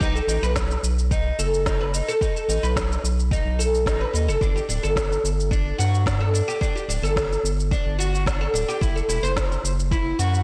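Organic downtempo with a meditative, warm mood, this fragment of a longer piece sets plectrum-plucked oud arpeggios up front, their woody double strings trailed by tape echo, over a round, dark analog bass whose wave-folded tone carries transformer saturation and sidechain pumping. A layered, deep electronic kick and a produced shaker with a snare re-recorded in a large room drive the straight groove through a harmony of B7, G5 and F#7(no3). Light reverb and digital ambience surround a blown-out, overdriven sound.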